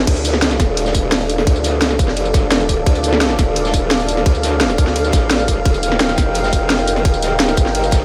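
A straight 4/4 drum and bass groove drops in at 0.1 seconds in this dark, technical passage. A tight, up-front electronic kick and the cracking snare of a layered kit lead the drums, with crash, ride, hi-hat and tambourine in studio reverb, and a gritty, saturated breakbeat kit sits very quiet beneath. A growling, wobbling bass with overdrive and chorus sounds bright and compressed from the start, under a deep, detuned sawtooth pad whose mellow sustained chords pump with sidechain, moving from Dm to Eb at 5.7 seconds in an aggressive, mechanical mood with light digital ambience.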